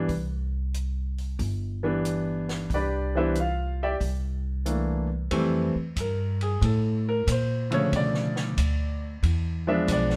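A concert grand piano carries the melody up front, its smooth, intimate tone rich in deep bass and touched with audible action noise that gives it a vintage character. This is a playful jazz piano trio excerpt at 92 BPM in 4/4, swinging its eighth notes and moving from C major to F major at 5.3 seconds. A woody, growly upright bass played pizzicato on steel strings sits close in the mix, while a compact cocktail drum kit enters at 0.1 seconds with hi-hat, ride cymbal, snare and kick, sounding dry and natural, with dark cymbals, a high-tuned snare and a tight kick. The harmony opens on Cmaj9 and C13, then shifts to Fadd9 before turning through Bm7b5 to E7b9 near the close. The trio plays together live in one room, wrapped in a moderate studio reverb that keeps the sound cozy and warm.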